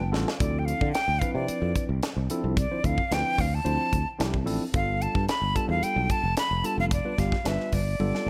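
Funky and intense, this short electric jazz fusion excerpt moves at 110 BPM in a straight 4/4, centred on D dorian and cut from a longer piece. A breathy, bright jazz flute carries the melody up front between D5 and B5, its close-miked sound marked by vibrato, a soft attack and expressive phrasing. Beneath it, a sustaining fretless electric bass sits prominently with a growly, punchy, direct amped tone, while a clean tine electric piano plays accompaniment through its built-in speakers, opening with a brief fill before the harmony settles on Dm9 at 0.4 seconds and shifts to G9 at 4.7 seconds. A crisp, airy and polished fusion drum kit, heard up front in a studio room with a high-tuned snare, punchy kick, hi-hat and toms, enters at 0.1 seconds with a fill and adds another near the close. Light reverb and a small room ambience round out the sound.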